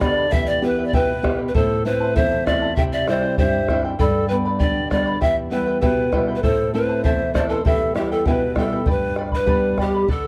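A reedy bamboo pan flute carries the melody in this festive, earthy Andean folk excerpt, its breathy tone marked by vibrato, tongued chiff on the attacks and rolled-off highs. Alongside it, large cane pan pipes play an expressive second line, reaching up to G5. A fingerpicked charango adds a shimmering sparkle from its double strings, while a bright nylon-string guitar, fingerpicked in a classical manner with fresh strings, sits up front in the accompaniment. A round bombo sounds distant, as if in a large room, and the piece moves in 2/4 at 98 BPM. The harmony cycles through Em, Am, C and G before settling on G at 8.9 seconds, all captured in a dry, close 1970s-style studio sound with light reverb and a small room ambience.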